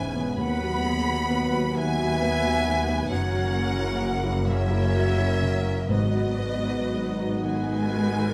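Bittersweet and full of longing, this short cinematic excerpt moves slowly and freely in 6/8 at roughly 39-45 BPM, counted in dotted quarters, in G# minor. A lush violin section carries the melody with a focused vibrato, while a second violin section plays its own second line in the same register with a smooth, even tone, and an airy silver concert flute adds its own expressive second line with soft attacks. Beneath them, a felt-muted upright piano gives intimate accompaniment in the background alongside a viola section, a mellow French horn section holds very quiet sustained chords, and a concert harp adds faint, ringing fingerpicked arpeggios. The bass is shared by a distant cello section, played with portamento, and a double bass section with a smooth top. Timpani with medium mallets enter only from 5.9 to 7.4 seconds on a single very quiet G#. The harmony passes from B/D# through F#7 to G#m7, and close, detailed microphones sit within a moderate recital hall reverb.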